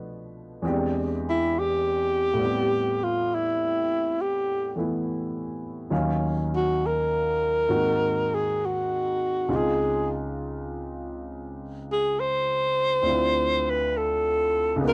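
A concert grand piano opens this intimate, romantic jazz ballad with a swung feel, its deep bass and audible action noise placed up front as it moves through rich altered and extended chords. At 1.3 seconds a breathy, close-miked alto saxophone enters with a whispered subtone solo melody, soft in attack and touched with vibrato. Both instruments carry the colour of cassette tape in a homely, lightly reverberant room, and the fragment is cut from a longer piece.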